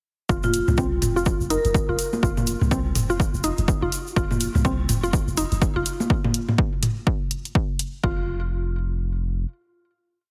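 A four-on-the-floor electronic kick, punchy and overdriven, drives this short minimal techno piece at 124 BPM in 4/4, with a 59% swing on the sixteenths giving the clinical, quirky groove a slight lilt. Overdriven electronic hi-hats carry the programmed hats and backbeat, a grainy, close egg shaker plays hand-played sixteenths, and layered electronic toms and congas add clicks and blips in cross rhythm. Underneath, a deep sine sub bass with a pitch-drop attack pumps against the kick in a dotted rhythm, saturated and up front. A round, woody FM synth pluck repeats a 16-step sequence through chorus and digital delay, also pumping, while a filter sweep moves across the synth arpeggio until 6.1 seconds, and a bright marimba with rosewood bars adds brief phrases near the start. The mix sits in light digital ambience with a heavily compressed, radio-like sound, and after the groove breaks off at 8.0 seconds, a final note rings until 10.3 seconds.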